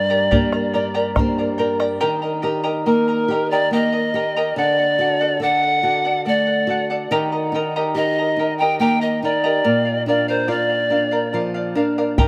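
In a slow, straight 3/4 at 71 BPM, this wistful, earthy Andean folk excerpt sets a breathy bamboo pan flute with vibrato and a soft chiff to carry the melody until 11.3 s, over a fingerpicked charango with shimmering double strings, alongside a small-sounding nylon-string guitar. The deep, dry bombo thumps only from 0.3 to 2.0 s, under a guitar fill, and returns at 12.2 s. Everything up front is bathed in a huge ambient reverb with an 8.7-second tail, as the chords move from Gm through Eb and D to Bb.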